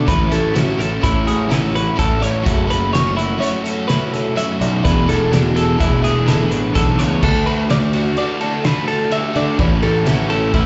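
Two clean, twangy twelve-string electric guitars, one picking accompaniment and one picking arpeggios in the background, open this bright, intricate fragment of math rock and Midwest emo. A double-tracked, overdriven electric guitar plays a riff alongside them, and a growly fuzz bass sits up front. A loose indie drum kit with a punchy kick, fat snare and dark cymbals joins at 0.1 seconds, its hi-hat, ride and crash driving a straight 5/4 groove in a pumping room. The chords move from A6/9 through F#m7 and E9sus4, and at 7.2 seconds the accompanying twelve-string drops out as the progression shifts to D6 before returning to A6/9. The whole performance sounds like a live club gig heard through the venue's PA, with a dull, muffled top end and light club reverb.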